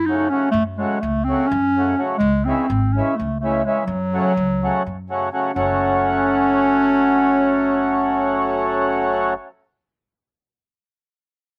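Balkan folk in the manner of a wedding band, fiery and restless at 251 BPM in straight 7/8 and F# minor, this short cut from a longer piece features a smooth, classical-style clarinet solo up front and a reedy, full accordion with a mid-forward tone chamber sound, both carrying a slapback echo, over a woody, growly pizzicato upright bass, all moving from F#m to C#m and back in a dry outdoor setting.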